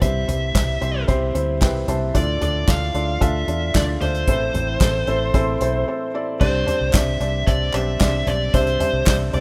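This uplifting piano-driven pop excerpt opens at 113 BPM in a straight 4/4 in C major, with a felt-muted upright piano, a dark lead guitar, a vintage fingered electric bass and an acoustic drum kit all starting together. The piano sits up front, soft, mellow and intimate, with its action noise audible, and it plays an early fill as the chords move from C through Dm to Am. The picked lead guitar carries the melody with a smooth, overdriven tone. Beneath it, the foam-muted bass gives round, punchy low notes, and the kit, played with bundle sticks in an airy small room, brings a tight kick, a medium-tuned snare, dark cymbals, hi-hat, toms and handclaps. After a brief break at 5.9 seconds the harmony settles on Csus2 at 6.4 seconds, and a very quiet, hollow group handclap joins at 6.9 seconds. Light reverb and a rough home-demo mix give the recording a loose, homemade quality.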